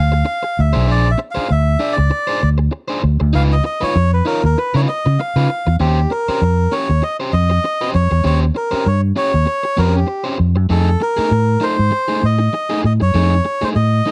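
Funk with a funky, strutting mood, this excerpt moves at 98 BPM in 4/4 with a light 16th-note swing. A reedy, breathy melodica carries the melody up front, taking a solo over the opening section until 5.8 seconds before the music shifts into a second section. Beneath it, a fingered electric bass sounds dark, round and punchy, sitting prominently in the mix from the very start. A crunchy overdriven guitar, picked and warm, fills in the accompaniment a little further back. The harmony moves through rich extended chords, from a rootless Bb9 and Db9 to Eb13 and finally F7#9 at 10.7 seconds. The sound is dry and close, like a 1970s studio recording, touched with light reverb.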